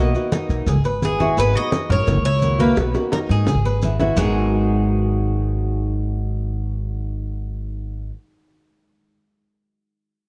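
Warm and sultry in mood at a brisk 171 BPM, this short excerpt of Cuban son and guajira in G# minor moves in a straight 4/4 over a dark, warm production with light reverb. A bright, metallic Cuban tres carries the melody with a slapback echo, while a second tres, warmer in tone with its doubled and octave-paired strings, picks arpeggios beneath it. A fingerpicked flamenco guitar adds bright accompaniment, and a woody, thumpy gut-string upright bass sits up front. Low-tuned congas struck with hard hands give a thin-skinned snap, with tight, high bongos and cowbell and grainy maracas tucked in the background. The harmony cycles through Bmaj7, C#m7, G#m7 and F#7, a drum fill arrives at 2.8 seconds, and the percussion drops away at 4.3 seconds, leaving the strings and bass to carry the second section until about 8.1 seconds.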